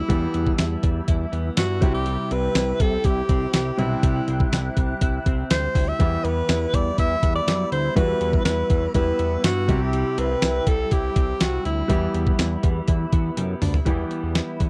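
A clean 12-bit drum machine sits up front from 0.1 s, its thumpy kick, fat snare, hi-hat, tambourine and toms driving a straight 4/4 groove at 122 BPM, with a drum fill at 13.4 s and a thick, saturated sawtooth bass beneath. This dramatic, nostalgic 1980s-style pop piece in E minor moves between Em and C, led by a warm alto saxophone playing a jazz-style solo with vibrato and scooped notes until 12.6 s. In the background, a clear, polished concert grand piano accompanies, a direct-recorded clean electric guitar plays a compressed riff with lush chorus, and an airy, expressive large flute ensemble holds sustained chords, all captured in a dry, close studio sound.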